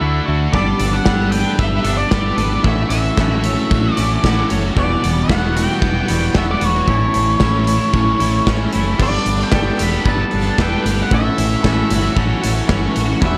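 A worn, warbling cassette-tape sound with audible pitch drift and a small room's reverb colours this brief indie rock fragment, cut from a longer piece and carrying a wistful yet upbeat mood in a straight 4/4. A dark, fuzzed octave lead guitar carries the melody high in its range through distortion and digital delay, while a brilliant, overdriven stack guitar plays a riff beneath it with analog chorus. A clean, compressed twelve-string electric adds a twangy riff of its own, and a round, direct fingered bass anchors the low end. The acoustic rock kit comes in at 0.5 s, sitting up front in an airy stone room with a polished sound, punchy kick, medium-tuned snare, and brilliant hi-hat and crash cymbals. Chords move from Dadd9 through Gadd9, A6, Emadd9 and A, and at 9.0 s the music shifts into a new passage that returns to Gadd9 and A6.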